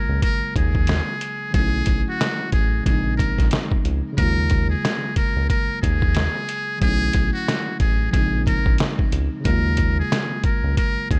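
A swung boom-bap groove at 91 BPM in 4/4 drives this reflective, moody hip hop passage in Eb minor, cut from a longer piece. The trip hop sampler-style drums sit up front from 0.2 seconds, with a thumpy kick, a medium-tuned snare and hi-hat, all pitched down, compressed, muffled and roughened with vintage 12-bit grit, as if re-recorded in a small room. A deep, round analog bass enters at 0.1 seconds, its dark sustained tone mixing sawtooth, sine and triangle colours with a touch of ring modulation and a fast attack. A worn, slightly out-of-tune tine electric piano carries the harmony through the whole passage, its mellow sound coloured by cassette tape and filtering. Over the top, a trumpet with a metal mute plays a solo melody in jazz style, buzzy, thin and brilliant, with light vibrato and digital delay. The chords cycle through Ebm11, Bm11 and Bbm11 under a digital ambience.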